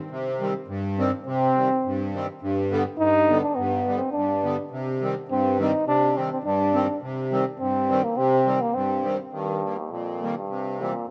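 Jolly and festive, this short alpine folk dance tune, cut from a longer piece, moves in a lilting two-beat metre with a gentle swing. A reedy musette accordion opens the accompaniment at 0.1 seconds, its shimmering tuning and boxy small-room tone sitting up front in the lower register. At 1.3 seconds a clear euphonium enters with the melody, played solo in a classical style with a soft attack and light vibrato, its vintage colour touched by tape echo. The minor-key harmony rocks between tonic and dominant before a second section at 9.3 seconds turns toward brighter major chords. A moderate recital hall reverb surrounds the close, detailed sound.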